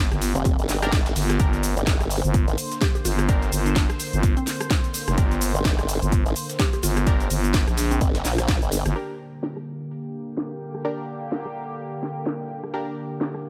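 A resonant sawtooth pad and a thick, growling FM bass open this aggressive, gritty bass house excerpt in G minor, both pumping against the sidechain, with the pad's filter evolving slowly over sustained chords. At 127 BPM in 4/4 with a swung 16th feel, a punchy, overdriven electronic kick sits up front beside a layered house kit of cracking snare, bright hats, rim click and shaker, its percussion darkened by low-pass filtering and a small room ambience, while a very quiet, dusty sampler-style kit adds a faint compressed layer. A formant-sweep wobble bass with tube saturation joins the growling bass in the low end, and a woody, mallet-like FM pluck carries a mellow melody in the background through cassette-tape colour, lush chorus and delay. A nasal, band-passed chord stab with detuned sawtooth bite and delay punctuates the groove. The basses, kick, pluck and lower-level kit all fall away by 9.0 seconds, leaving the pad, house kit and stabs to carry the closing section in a dry, close-sounding mix.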